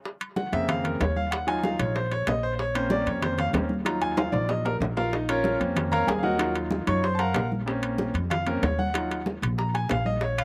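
A bright grand piano takes the lead up front in this driving, danceable salsa excerpt, its brilliant, intimate tone carrying audible action noise and long sustain as it solos over alternating Bbmadd9 and Ebmadd9 chords. Beneath it, a thumpy, woody upright bass with gut strings is played pizzicato, while ringing congas and round low-tuned bongos with slapback echo sit in the background, and close, dry metal-shell timbales ring out, with a drum fill at 4.2 seconds. Claves sound only at the very end, at 10.4 seconds, and the whole is dry, with the open feel of an outdoor recording.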